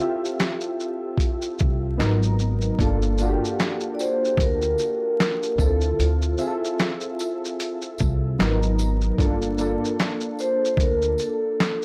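Lo-fi hip hop with a melancholic, nostalgic mood and a swung 16th feel, cut from a longer piece and heard through a dry, gritty recording dusted with vinyl crackle. A mellow, airy vibraphone carries the melody through analog delay and slow motor vibrato, over detuned, warbling synth keys thickened by chorus and cassette tape as the chords move through a rootless Dm9, Abm7 and Gm7. Muffled, pitched-down, overdriven sampler drums with a thumpy kick, handclaps, hi-hat, shaker and snare sit up front; a woody, dark pizzicato upright bass joins at 1.6 s, and a jingly tambourine rests in the background from 3.2 s.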